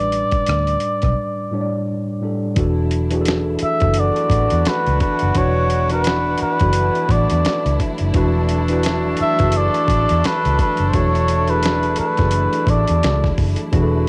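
R&B with a neo-soul lean, this smooth, warm passage from a longer piece sits at an unhurried 86 BPM in 4/4, with a lazy swing on the sixteenths and a brief break from 1.2 to 2.6 seconds. Up front, a cup-muted trumpet carries the melody in a soft, veiled, breathy voice with light vibrato and a jazz-styled smoothness. Beneath it, a worn, slightly out-of-tune tine electric piano plays mellow accompaniment with a cassette tint. A round, foam-muted fingered electric bass adds dark low end, while a gritty, compressed sampler-style drum kit drives with a thumpy kick, fat snare, hi-hat and rim click under overdrive. The harmony moves from A9sus4 to E9sus4 at 2.6 seconds, where lush, bowed strings arrive in the background with portamento, and a tight, distant horn section adds roomy stabs from 4.0 seconds with a tape echo, all wrapped in a light reverb and the hazy character of a home cassette recording.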